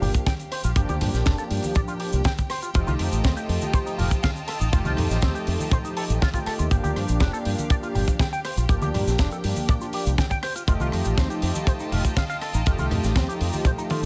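A straight 4/4 groove drives this sleek, groovy nu-disco excerpt, with an up-front tight kick and a small-room funk kit of high-tuned snare, rim click, hi-hat, toms and cabasa, bright, dry congas in the background, a punchy fingered bass through an envelope filter, a twangy, picked guitar riff with its own envelope filter plus subtle chorus and delay, dark, round synth brass pumping with chorus and delay over Gm7 and F9, and a focused, bowed violin section that also pumps as it holds sustained chords in the background.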